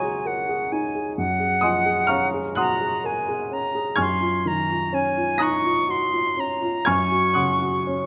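Heard through close, detailed microphones in a recital hall with moderate reverb, this short passage cut from a longer piece is an impressionist classical duo for flute and baby grand piano, wistful and mysterious in a slow, rubato 6/8. Up front, the silver concert flute carries the melody in its upper register with a pure, metallic tone, vibrato and soft attacks, phrasing expressively. The warm, natural-sounding grand piano spans from deep bass to high treble in support, moving through lush, suspended and ninth-colored harmonies from the start to 8.1 seconds.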